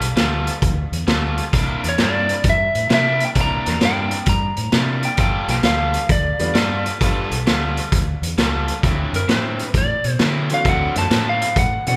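Recorded as a band playing live in one room with a moderate large studio reverb, this gritty, swaggering electric blues shuffle at 132 BPM in G mixolydian sets a saturated, mid-forward vintage drum kit up front under an overdriven guitar riff with spring reverb and a round, punchy fingered bass, while a slightly broken-up lead guitar carries the melody from 1.9 s and a metallic, jangly tack piano adds brief accompaniment at 6.4 s and again from 10.5 s in this short cut from a longer piece.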